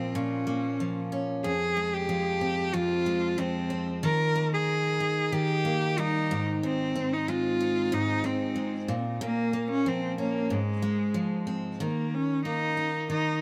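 Set in a light reverb, this sunny, carefree pop excerpt moves at 93 BPM in a straight 4/4 in Ab major, with a rich, boxy bowed cello carrying the melody up front, its smooth vibrato touched by a digital delay. A bright, full-bodied dreadnought steel-string acoustic guitar, picked with audible finger squeak, accompanies it throughout, moving from Bbm through Fmadd9, Eb and Ab before the passage shifts at 11.8 s onto an Eb5 chord and is cut off at 13.4 s.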